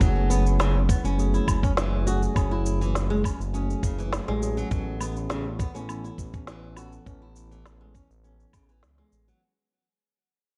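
Opening at once on a gritty, thumpy up-front kick, a woody electronic snare with shaker and woodblock, a smooth sawtooth synth bass with sidechain pumping, fingerpicked flamenco guitar arpeggios with fresh-string finger squeak and delay, and a clean tine electric piano carrying a filter sweep, this earthy organic downtempo piece at 102 BPM in F# minor moves from F#madd9 to Aadd9 at 4.7 seconds inside light reverb and a dark, warm production, fading out across its 9.4 seconds.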